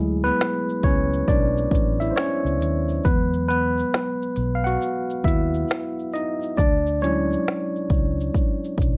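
A light reverb gives this short lo-fi hip hop excerpt a cosy, mellow glow at 68 BPM in 4/4, with a lazy swing on the sixteenths. A worn, slightly out-of-tune tine electric piano sits up front and carries the solo throughout, its clean tone heard as if through built-in speakers while it moves from Dmaj9#11 to Emaj7 and back. Beneath it, a vintage muted fingered electric bass plays low, its dark, amped sound foam-muted into something round and punchy. An organic electronic drum kit arrives at 0.3 seconds, also up front, with a deep kick, woody snare, smooth hi-hats, finger snaps and shaker giving it a produced electronic character. A very quiet tube shaker joins at 0.4 seconds, adding a grainy, bright, band-limited acoustic texture with a vintage feel.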